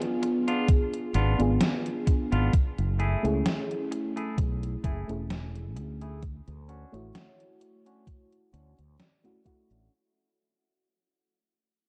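A soft, warbling FM electric piano with chorus and tape echo opens alongside an overdriven 80s drum machine's gated hi-hat and snare in this nostalgic, woozy 65 BPM vaporwave fragment, joined by a twangy clean electric guitar riff carrying sampler grit and a filter sweep, a thumpy overdriven electronic kick at 0.7 seconds and a growly, lushly chorused fretless bass at 1.1 seconds, all drifting through G#dim7, F#m9 and Dmaj7 in a dark cassette-tape haze that fades throughout before the guitar adds a closing fill at 8.5 seconds.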